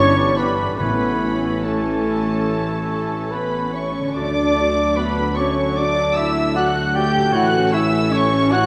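Lyrical and warm, this slow romantic orchestral passage in 4/4 breathes with a flexible rubato, and it is cut from a longer piece. A woody, vibrato-rich violin section carries the melody high in its register, played sul tasto with a lush, distant quality, while a very quiet, intimate chamber violin section, a hollow silver flute, a warm oboe and a smooth-topped clarinet weave second lines beneath it. Floating violas fill the accompaniment, a very quiet French horn section and a roomy trombone section hold sustained chords, and a mellow trumpet adds stabs above them. The low end rests on a close, soft-attacked cello section, a tuba and a rich double bass section, with a ringing harp adding very quiet arpeggios. Timpani struck with hard mallets sound crisp and dry from 0.8 to 2.0 seconds, all of it set in a concert hall reverb with a faint mains hum.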